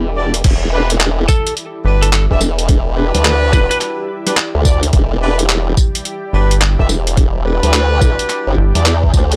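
A dry, gritty recording opens this playful, swaggering glitch hop excerpt at 107 BPM in E minor, where a chorused, tube-saturated formant-sweep wobble bass sits up front over a thumpy, pitched-down electronic kick and a tape-warm boom bap kit of medium-tuned snare, handclaps, hi-hat, tambourine and crash, all swinging on an Em7 drop from 0.4 seconds. Punchy horn stabs with light vibrato and analog delay pump against the sidechain, while a cloudy granular pad drifts in the background through its own reverb. A slightly broken-up, dark lead guitar picks a short delayed phrase between 1.3 and 3.8 seconds, and a rubbery, hollow square bass bounces in on G1, returning from 6.3 seconds.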